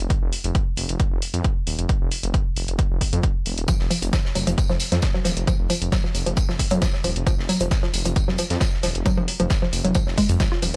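Hypnotic and intense, this short cut from a longer driving peak-time techno track runs in a straight 4/4 metre. A punchy, layered electronic kick sits up front alongside metallic electronic hi-hats, both re-recorded in a small room, while a thick, menacing detuned saw bass with beating, tube-saturated tone and sidechain pumping holds the low end from the first moments. At 3.7 s a woody wave-folded pluck enters with a riff, its percussive, evolving attack colored by subtle chorus, vintage 12-bit sampler grit, tape echo and pumping. At the same point a big rock drum kit joins underneath, adding a dark, fat snare, hi-hat and tambourine, with high-pass filtering thinning its hats, snare, percussion and room. The whole piece carries a dry, gritty hardware character with a cassette tape tinge and a touch of studio reverb.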